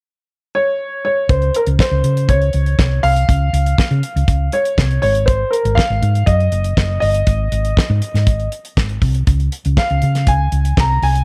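A smooth, vintage grand piano carries the melody from 0.5 s in this glamorous, joyful disco excerpt in Db major at 120 BPM, joined at 1.3 s by a round, dark hollow-body fingered electric bass and a dry, damped 70s drum kit with a fat snare, tight kick and hi-hat, all three sitting up front in a dark, warm production with studio reverb as the harmony moves from Dbmaj7 to Ab5 and back.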